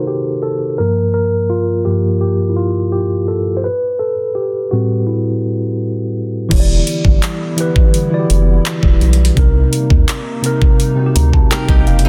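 Late-night and longing, this contemporary R&B excerpt opens with a mellow tine electric piano playing alone under a filter sweep, its clean tone sitting up front. At 6.5 seconds a knocking trap kit with metallic hi-hats, handclaps and crash enters alongside a deep, round analog bass and a hollow, flute-like pad that warbles with ensemble chorus and sidechain pumping in the background. At 11.5 seconds a bright, fingerpicked flamenco guitar adds delayed arpeggios, all within a dry, dense and heavily limited modern master.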